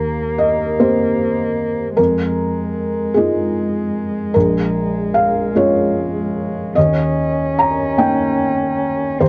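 A felt-muted upright piano, dark and intimate with audible action noise and short sustain, carries the accompaniment up front while a single con sordino cello adds a veiled second line with light vibrato in this reflective, melancholic neoclassical fragment of 9.3 seconds, moving in a rubato 6/8 at 50 BPM through Cm7/Eb, Fm7, Bbm7 and Eb7, all softened by light reverb and the warbly pitch drift of worn old cassette tape.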